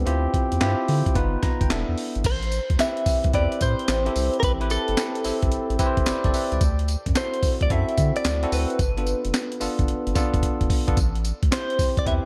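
Punchy and bouncy, this short new jack swing R&B clip at 110 BPM in A minor rides swung sixteenths, with a clean, direct-recorded electric guitar melody colored by phaser and shimmer reverb, bell-like tine electric piano accompaniment that adds fills at 1.2 and 5.8 seconds, a round, deep analog bass, and a gritty, compressed breakbeat sampler-style kit of thumpy kick, snare, hi-hat, handclaps, tambourine and crash that drops a fill at 10.4 seconds, set in a dark production with light reverb.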